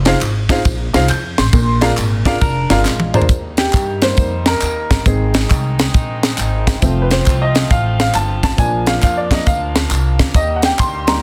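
Dense, heavily limited and lightly reverberant in a small room, this jubilant, reverent uptempo gospel excerpt swings at 136 BPM in Eb major. It is driven by a dry, up-front funk drum kit with a high-tuned snare and tight kick, a woody pizzicato upright bass, and tambourine and handclaps in the background, while a bright, twangy clean electric guitar line appears briefly from 2.3 seconds. A drum fill leads into a slightly detuned, vintage-sounding upright piano solo from 3.3 seconds over distant, nasal muted French horn chords.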